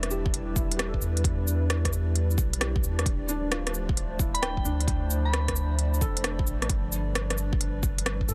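Rainy and ghostly, this short future garage excerpt moves at 132 BPM in 4/4 with a heavy swing on the sixteenths, its chords moving from Em7 to Dm7 to G7. A felt-muted upright piano plays soft, intimate accompaniment with audible action noise, pumping against the kick and trailing dub echo, while a warbling, tape-like pad holds detuned, nostalgic chords colored by chorus, its own reverb and gritty 12-bit sampler texture. Beneath them a round sine sub bass sits deep and mellow, also pumping with the sidechain. An organic electronic drum kit of cabasa, smooth hi-hats and rim clicks is overdriven and placed up front, joined at 0.3 seconds by a layered, deep electronic kick. Between 4.3 and 5.6 seconds a pure FM synth bell drifts in high over the Dm7 with chorus, tremolo and dub echo. The mix is dry, dense and heavily limited, giving the hazy textures a close, modern punch.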